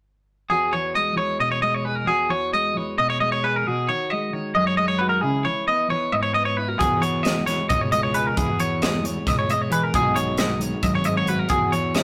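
Two clean electric guitars open this playful, intricate math rock and midwest emo piece in 7/8, a dark, fingered guitar holding down chords such as E69 and C#m9 beneath a bright, twangy guitar picking high arpeggios up front. At 6.8 seconds a growly, overdriven fuzz bass and a crisp fusion drum kit with a high-tuned snare and punchy kick join in. The rough rehearsal-room sound carries a moderate stone-room reverb, tube saturation and a faint mains hum, and the passage is cut from a longer piece.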